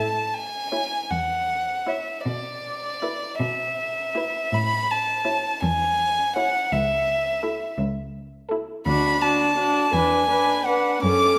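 Lyrical and warm, this slow romantic movement for string quartet unfolds in 6/8 with uneven beats and free rubato, as heard in a short passage cut from a longer piece. The first violin carries the melody up front, played sul tasto with light vibrato, a soft attack and an airy, intimate bow. The cello sounds from the very start beneath it, dark and close, its smooth-topped bass line also bowed sul tasto with vibrato. At 0.7 seconds the second violin enters with a woody second line, and the viola joins at the same moment with a pure, floating accompaniment. The harmony moves from A through E5/B, A/C# and D to a closing E7, and a reverberant recital hall wraps the quartet in a lingering glow.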